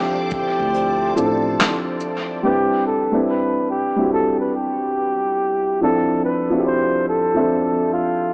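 Nostalgic and mellow, this short lo-fi hip hop cut drifts on a swung 16th-note feel and a wistful move from Dm7 to Cmaj7 and back to Dm7. Up front, a soft-toned flugelhorn carries the jazz-style solo melody with light vibrato and scooped notes, its tone rounded off by a low-pass filter. A dark, woody upright piano accompanies throughout, slightly detuned and with long sustain, coloured by cassette tape and filtering. Behind them, a lush vintage string machine holds sawtooth ensemble chords with a sub octave, phaser and chorus until 2.4 s, while a brushed drum kit with handclaps, hi-hat, shaker, snare and a punchy kick plays only until 2.3 s, roughened by 12-bit sampler grit and dub echo. A pizzicato upright bass appears only briefly near the start, and the whole mix sits in a moderate spring reverb with an echo-heavy, cassette, small-speaker character.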